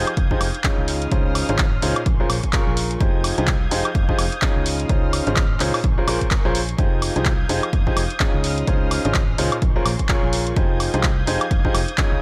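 A clear, up-front baby grand piano riff with digital delay and sidechain pumping leads this soulful, bittersweet piano house cut in F minor at 127 BPM with a swung 16th feel, cycling through Fm9, Dbmaj9 and Bbm9 over a round, dark fingered electric bass and a distant, veiled con sordino violin section holding soft-attack vibrato chords, both also pumping, while a punchy analog drum machine with handclaps, hi-hat and woodblock and a forward electronic kick, re-recorded in a large room, drive the groove inside a digital ambience.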